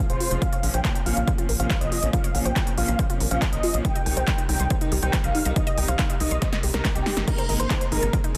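Bittersweet and driving, this uplifting trance excerpt runs at 140 BPM in a straight 4/4. A huge, euphoric supersaw lead carries the melody between G4 and G5, its detuned sawtooth voices thickened by a noise layer, with sidechain pumping, a low-pass filter and dub echo. Beneath it, a smooth-topped studio string section holds bowed, vibrato-laden chords moving from Bbmadd9 at 0.4 seconds to Cm and then Abadd9. A lush, detuned pluck sits in the background with bright arpeggios under a filter sweep, phaser and tape echo, while a tight, dark sequencer bass of sawtooth and square waves pumps in the low end. An overdriven, punchy electronic kick drives up front from 0.4 seconds, locking in with a big-room kit of crisp hats, handclaps, snare and crash that has already entered at 0.1 seconds and plays a fill from 6.4 to 7.3 seconds, all set in digital ambience and a dense, heavily limited master.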